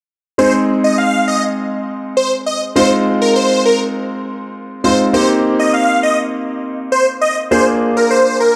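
Confident and energetic, this short excerpt of a pop track moves at 101 BPM in a straight 4/4. A huge supersaw chord patch carries the melody between Bb4 and F5, its detuned sawtooth unison voices striking with a fast attack, sustaining, and shifting under a moving notch. Beneath it, a concert grand piano plays the accompaniment from Ab3 to Ab4 with a clear, smooth, vintage tone and deep bass. Both parts sit up front and run together from about 0.4 seconds to the end, over a progression of Ab, Fm7, Cm7 and Bb7. A moderate, lush hall reverb with a 2.8-second decay surrounds the dark, warm production.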